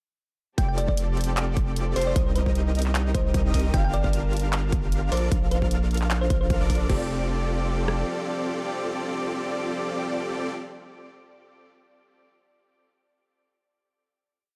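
Huge, detuned supersaw chords drive this lush, euphoric future bass drop, their syncopated pushes throbbing with sidechain pumping over a deep, saturated sub bass and a punchy half-time big-room kit of kick, rim clicks, claps, crash and rolling hats. A round, tine-like thumb-piano pluck with tape echo plays short answering phrases, while an airy, dreamy lead with phaser and cassette-tape colour doubles the chords in arpeggios and a soft, bowed string section floats in the background. The drums drop out by 8.0 seconds, leaving the strings, lead and supersaws to hold a final chord in this dark, dry production.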